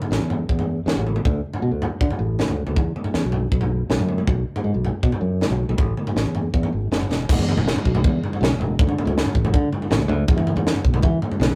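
Bright and wistful, this short math rock and midwest emo fragment moves at 159 BPM in a straight 4/4, tuned to A4 = 438 Hz. A crisp fusion drum kit, with a high-tuned snare, tight kick, crash cymbal and toms pumping in a small room, sits up front beside a growly, direct fingered electric bass ranging from E1 to E3, all in a rough rehearsal-room sound with tube saturation and moderate small-room reverb, as a drum fill at 7.1 seconds leads into a new section at 7.3 seconds.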